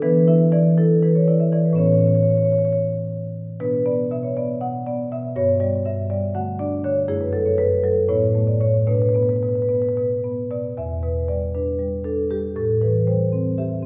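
A solo marimba played with medium mallets carries this reflective, hypnotic contemporary classical fragment, its tone warm and boxy, close and up front, set within a wet recital-hall reverb that is heard from further back in the room. Moving in a rubato 7/8 at 237 BPM counted in eighths, it spans E2 to F#5 and drifts through chords such as Aadd9, Bm, Gmaj7 and F#m7 in B minor. At 10.8 s it shifts to E minor, settling on Em7 and Am7 until it is cut off at 13.9 s.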